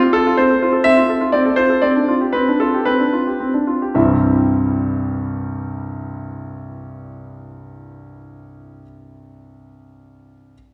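A classical-period piano sonatina excerpt in C major, serious and restless in mood, moving in 4/4 at a rubato pulse between 106 and 127 BPM that slows over the first 3.9 seconds. A bright concert grand plays solo from C2 to E5, its brilliant, polished tone sitting up front with deep bass and short sustain, passing from F/C to G7/C before settling on C at 3.9 seconds. The wet recital hall reverb, with a 1.4-second decay, gives the church or concert hall setting a resonant spaciousness.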